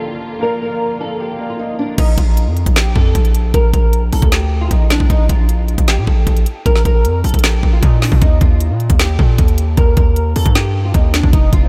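Dreamy yet triumphant, this half-time trap and hip hop excerpt at 154 BPM opens with a filter sweep over a fingerpicked flamenco guitar melody, finger squeak and all, colored by chorus and delay, alongside a deep-bassed concert grand piano and a rich, bowed string section holding smooth chords with vibrato, before a saturated, aggressive 808-style bass and an up-front electronic trap kit with knocking kick, woody snare, crisp hats, handclaps and crash take over beneath the guitar at 2.0 s, moving from Bb to Ebadd9 until a very quiet electronic swell arrives at 11.6 s.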